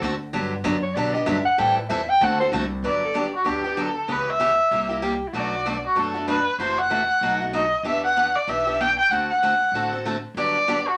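A moderate studio reverb surrounds this lively, charming stretch of acoustic string swing in G major at 192 BPM, where a bright, picked parlour steel-string guitar with fresh strings and a woody, thumpy pizzicato upright bass on gut strings carry the accompaniment, a breathy, whispered soprano saxophone enters at 0.8 seconds with an intimate jazz solo, and a rich, nasal erhu, bowed with light vibrato and portamento, takes up the melody at 2.9 seconds with a biting, earthy edge.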